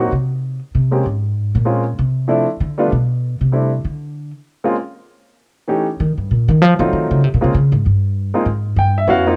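Jazz at a brisk 194 BPM in 4/4, swinging its eighth notes with a warm mood in this short cut from a longer piece. A baby grand piano carries the melody from E3 to G5, its tone natural with short sustain and a cassette-tape coloring, sitting up front in the mix. An upright bass, plucked on steel strings with a woody, acoustic body, ranges from F2 to F3 and is featured as a solo from 0.0 to 8.5 seconds while the piano continues alongside it. The harmony moves through colorful, shifting chords such as Bb7sus2, Dm7, A7#11, F7b9 and Bbm7, broken by chordless passages, before settling on Ab5 at 8.5 seconds. The sound is that of a homespun cassette recording in a booth with a brief, moderate ambience.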